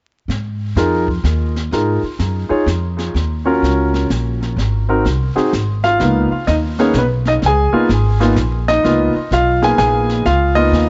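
A swung 3/4 lilt at 126 BPM carries this relaxed jazz piano trio excerpt, where the woody, up-front pizzicato upright bass and a brushed kit with a high-tuned snare and boomy kick start at 0.3 s, the natural-sounding baby grand piano enters at 0.8 s with a tape-echoed melody, and the Db major harmony turns mixolydian on a Db13 chord at 6.0 s, all set in a small, lightly reverberant room with vinyl crackle and a soft, dulled top end.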